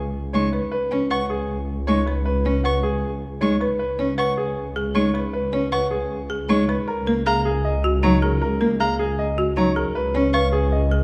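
Classical minimalist pattern music at 156 BPM in a propulsive, hypnotic 4/4, where a lush, bowed double bass section sits on a low Db2 from the start, joined at 0.3 s by a brilliant grand piano melody, an expressive cello accompaniment with vibrato and portamento, dark, smooth-topped violin arpeggios, and woody, hard-mallet marimba arpeggios, all moving from a Db7 with its third omitted through Gbadd9/Db and on to Db7 within a scoring-stage reverb in this short excerpt.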